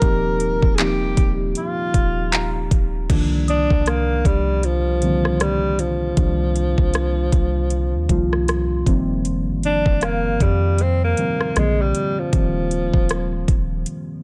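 Wrapped in digital ambience, this sensual, longing contemporary R&B excerpt in C minor moves at 78 BPM with a swung 16th feel: a breathy, subtone alto saxophone carries the melody through tape echo over muted, chorused felt-like synth keys, a round, deep 808-style bass, an up-front kit with vintage 12-bit sampler grit (knocking kick, metallic hi-hat, handclaps, rim click and crash), and a faint, bell-like celesta, slightly out of tune and also echoed, that drops out of the background at 11.5 seconds.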